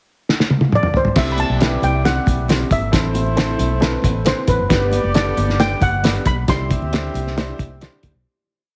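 A driving soul beat with the snare on all four beats, played on a cloth-damped, thuddy drum kit that opens with a fill at 0.3 seconds, pushes this joyful, danceable 1960s-style soul piece at 135 BPM in 4/4, as a metallic, shimmering steel pan carries a motif-based melody over a mellow horn section's swelling long notes, a woody upright piano's quarter-note chords, a round, foam-muted electric bass line with chromatic approach notes and a very quiet syncopated conga groove, all heard through a heavily compressed radio sound with small room ambience before the fade-out from 6.5 seconds.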